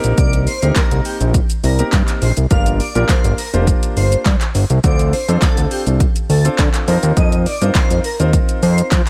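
A straight 4/4 deep house groove at 103 BPM drives this confident, bittersweet dance-pop passage in G minor: a punchy, overdriven kit of kick, fat snare, metallic hi-hats, handclaps and shaker sits up front beside a thick, detuned analog bass that pumps against the kick. A clear grand piano with audible action noise, also pumping, comps through Cm7, Gm7, Dm7 and F7sus4 beneath an airy, dreamy lead that enters at 0.2 seconds, its soft sine tone shimmering with chorus, phaser, vibrato and digital delay. The mix is dry and close, and this cut from a longer piece runs about 9 seconds.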